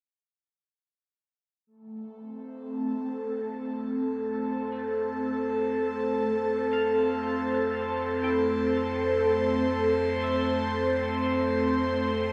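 A slow, straight 4/4 pulse at 60 BPM underlies this luminous ambient passage in F major, cut from a longer piece and resting on a single Fmaj7 chord. A deep, rumbling drone fades in around 1.6 seconds, its dark, ominous low F carrying its own built-in reverb and a slow attack with a long release. Just after, at 1.9 seconds, an airy, breathy pad sits up front with sustained chords, its detuned sawtooth and triangle layers, soft noise and slow swell of attack treated with chorus, phaser and shimmer reverb. From 4.7 seconds a clean, bright electric guitar adds very quiet picked arpeggios. The whole is bathed in a cathedral-like reverb with a long 7.2-second tail, giving the music a warm, glowing, suspended calm.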